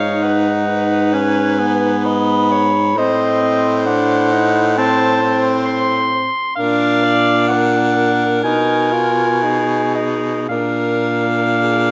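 A mellow, vintage-toned clarinet sings the yearning lead up front in this melancholic classical fragment for single-reed quartet, cut from a longer piece, moving in a rubato 4/4 at about 53-67 BPM over minor and diminished harmonies, with a clear alto saxophone adding a second line with light vibrato, a warm tenor saxophone supplying accompaniment, and a baritone saxophone with vibrato anchoring the bass close up, all set in a moderate recital-hall reverb.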